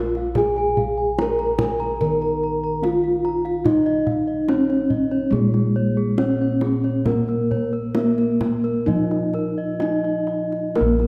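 In a straight 4/4, this serene, ceremonial Javanese gamelan fragment sets a mellow bronze metallophone melody, struck with padded mallets and shimmering with paired-tuning beats, over a dry, close-miked second metallophone playing arpeggios with a wooden mallet, round up-front bossed gongs carrying the bass, and a tight, softly hand-played kendang entering at 0.2 s, all within a dark production and a moderate concert-hall reverb.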